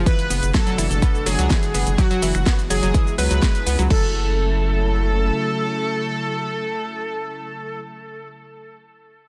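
Driving and emotional, this progressive house excerpt in F# minor at 125 BPM opens on a drop, with a punchy, up-front electronic kick and a house kit of cracking snare, metallic hi-hats, cabasa, finger snaps and crash cymbal, while a deep, round analog bass with tube saturation pumps beneath them. A lush, thick unison pad with chorus carries sustained chords moving from Bm/F# through Eadd9/F# and C#m to F#m7, as a bright, detuned analog pluck spins arpeggios through tape echo. The drums and pluck stop at about 4.0 seconds and the bass at 5.3 seconds, leaving the catchy, full-bodied unison lead with its sub octave, cassette tape colour and tape echo singing over the pad in a dense, heavily limited mix with little reverb.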